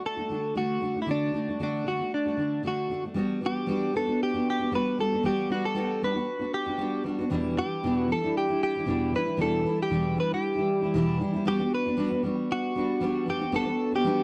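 A dry, close recording in a small room with a 1970s studio feel carries this short, carefree and heartfelt pop excerpt in G major at 116 BPM, with a light swing on the sixteenths. A double-tracked, fingerpicked steel-string jumbo acoustic guitar with fresh strings and a full-bodied tone provides the accompaniment from the start, and a clean, compressed, scooped electric guitar, recorded direct with analog chorus, joins at 0.1 seconds to carry the melody. Both guitars sit up front as the harmony moves from D to Gmaj7 at 3.2 seconds and Em7 at 7.3 seconds before settling back on Gmaj7.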